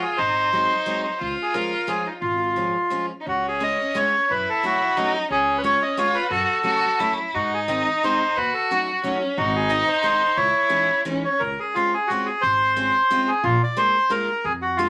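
A reedy, airy bandoneon carries the melody up front in this charming, whirling musette waltz excerpt with a lilting rubato swing, joined by a rich, boxy bowed violin with vibrato on a second line until 11.4 s, a bright picked steel-string acoustic guitar accompaniment, and a woody, thumpy pizzicato upright bass on gut strings, set in a moderate studio room as the harmony turns minor at 3.3 s before returning to major.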